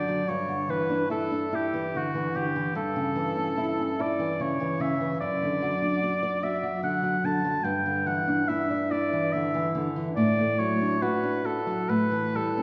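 Tender and serene, this romantic duo for oboe and classical guitar moves at 73 BPM in a rubato 3/4, in D major with tuning at A4 = 439 Hz. Up front, the warm oboe sings the classical-style solo melody between F#4 and A5 with light vibrato, while the dark, small-sounding nylon-string guitar fingerpicks the accompaniment through Em7/G, A7/G, D/F# and D/A. Both parts play through this 12.6-second fragment of a longer piece, which is heard from further back in a concert hall with wet reverb.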